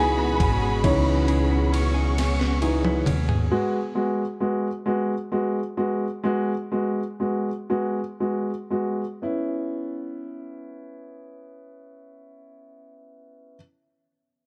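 A boxy, intimate upright piano with audible action noise leads this aching, melancholic six-eight pop ballad in C# minor at 38-45 BPM. It sounds together with smooth-topped symphonic violins, lush distant bowed strings, a clean picked electric guitar with delay tucked in the background and up-front pizzicato gut-string upright bass. Shortly after, a gritty, pitched-up sampler-style drum kit with a thumpy kick enters and plays a fill from 2.2 to 3.5 seconds. The other parts then fall away, and the piano carries on, trailed briefly by the guitar's last notes, over the move from C#m7 to G#m7 as the tempo slows, ringing out until 13.6 seconds in a dark, lightly reverberant small room.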